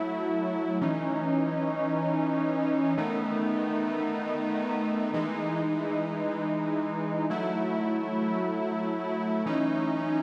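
Driving and confident, this free-time pop excerpt in F# dorian, tuned to A4 = 436 Hz and cut from a longer piece, features a big, fat, detuned and wave-folded polysynth playing alone from 0.0 to 10.2 seconds between D#3 and E4, sitting up front with lush chorus and analog delay as it moves through F#m7, C#madd9, B7/D# and Emaj7 before returning to F#m7 and C#madd9, all soaked in a dreamy cathedral reverb with a 4.4-second decay.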